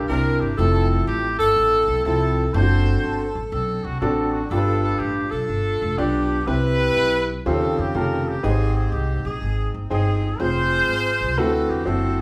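A tight horn section, a concert grand piano and an upright bass all sound together from the first moment of this short cut from a longer uptempo gospel piece, which moves with a swung 4/4 lilt and a soulful, reverent mood. The horns carry the melody up front, their tone warm and pop-styled with a light vibrato. Beneath them the piano plays accompaniment with a clear, intimate, somewhat boxy sound, deep bass and long sustain, and its action noise is audible. The upright bass, plucked pizzicato on steel strings, sits forward in the mix with a woody acoustic tone. The harmony moves through rich extended chords, shifting at 7.5 s to Eb13 and then Abmaj7 before ending on D13. The band plays live in one large studio room, and moderate reverb lends the performance a sense of space.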